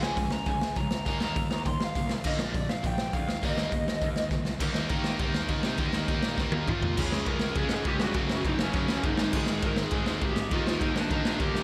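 A rowdy, rebellious punk rock excerpt at 203 BPM opens with an up-front, gritty garage drum kit with a boomy kick, a dark lo-fi lead guitar through a small cranked amp carrying the melody with slapback and tape echo, crunchy and scooped distorted rhythm guitars riffing in the background, and a growly fuzz bass, with a double-tracked distorted guitar joining at 4.6 s, drum fills at 4.3 and 6.4 s, and chords moving from Db through Eb and Bb before shifting to Db, Gb and Ab at 7.0 s, all in a big arena sound with lush hall reverb.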